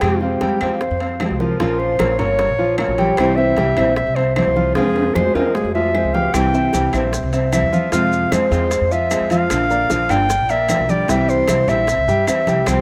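A straight 4/4 Cuban son and guajira groove at 152 BPM rides on low-tuned, thick-skinned congas, tight, high-tuned bongos, woody claves and ringing metal-shell timbales, with a drum fill from 4.8 to 6.3 seconds and grainy, saturated maracas joining at 6.3 seconds. Up front, a classical-style clarinet sings the nostalgic melody in F harmonic minor. Around it, a bright fingerpicked nylon-string guitar plays accompaniment, a boxy, intimate grand piano with audible action noise and long sustain rolls arpeggios, and a growly pizzicato upright bass anchors the low end, all set in a lush hall reverb within a rough home-demo mix.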